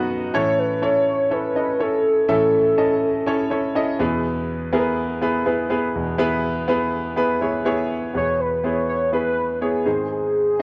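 Warm and anthemic, this pop excerpt at 123 BPM in E major sets a clear concert grand piano with deep bass and short sustain up front as accompaniment throughout, while a velvety, detuned synth lead with chorus and vibrato carries the melody from 0.3 to 3.7 seconds and returns at 8.2 seconds, the whole mix sitting in moderate scoring-stage reverb and the warbling pitch drift of worn cassette tape.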